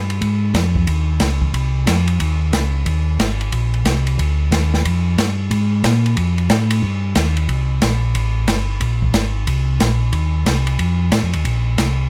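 Lightly reverberant, this greasy, soulful soul jazz organ trio excerpt swings in 4/4 as a mellow, round, dark tonewheel organ with audible key click and a slow rotary speaker carries the bass line up front from G1 to Bb2, beside an airy, polished acoustic drum kit in a small room featuring hi-hat, snare, dark ride cymbal and a boomy kick.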